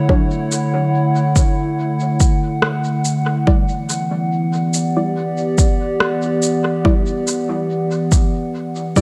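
A warbling, tape-like pad opens this deep, hazy ambient dub excerpt, its detuned square and triangle tones holding slow-blooming chords up front with chorus and a built-in reverb that give it a dark, nostalgic, lo-fi glow. Almost at once a muted dub chord stab joins, its detuned sawtooth sound shaped by a filter sweep into short, mellow hits that carry chorus and dub echo deep into the mix. An electronic kick arrives alongside it, layered, overdriven and placed up front with studio reverb, giving the track a heavy low pulse. From 0.5 seconds an electronic shaker and rim click add lighter percussion, softened by studio reverb and trailing dub echo under a gentle swing. The harmony moves from Dmaj7 to Em7 at 3.5 seconds, and a light reverb wraps the whole room in haze.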